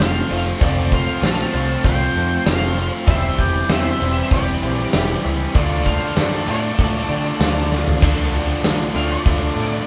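A straight 4/4 classic rock groove at 97 BPM in D minor drives this swaggering, brooding excerpt, where a big, fat-snared rock kit with a punchy kick sits up front alongside a growling, overdriven picked bass, while three picked electric guitars (one biting and double-tracked, one distorted and compressed, one overdriven) grind out the riff in the background beneath two dark octave-fuzz lead guitars carrying the melody and a second line, with a barky reed electric piano, a shimmering twelve-string acoustic, a fast-rotary tonewheel organ and a dry cowbell tucked far beneath, all moving through F, C/E and Dm in one live room with moderate reverb until a drum fill at 7.7 seconds launches a lead guitar solo at 8.0 seconds.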